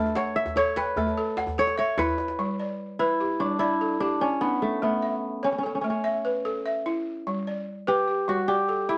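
West African traditional string and xylophone music in a flowing, hypnotic 12/8, this short excerpt has an up-front fingerpicked kora carrying a ringing, crisp melody and a woody, buzzing balafon, played with rubber mallets, weaving arpeggios over chords alternating between A and G, while a close, cracking djembe with metal rattles plays only until 2.4 seconds, ending with a brief fill, all in a moderate studio reverb.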